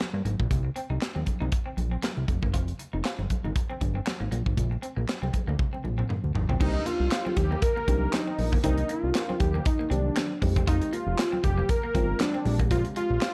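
This excerpt of early-eighties boogie funk opens at 118 BPM in C minor with a clean, hollow-bodied electric guitar riff coloured by tube saturation and lush chorus, set over a punchy, up-front studio drum kit with a high-tuned snare, handclaps, hi-hat, toms and crash, while ringing congas sit in the background. A fat analog bass enters at 0.1 seconds, thick and detuned with a sawtooth edge, ring modulation and a plucky filter, driving a funky, danceable groove with a light swing on the sixteenths. The harmony moves through Cm7, Fmadd9 and Bb9 before a drum fill at 5.6 seconds leads into the second section. At 6.6 seconds a detuned sawtooth lead with a sub octave, filter sweep and vibrato takes the melody, joined by a soft, round FM electric piano with a noise layer and chorus, over Cm9, Fm9 and Bb13. Light reverb and a dark, warm production keep the whole passage smooth and inviting.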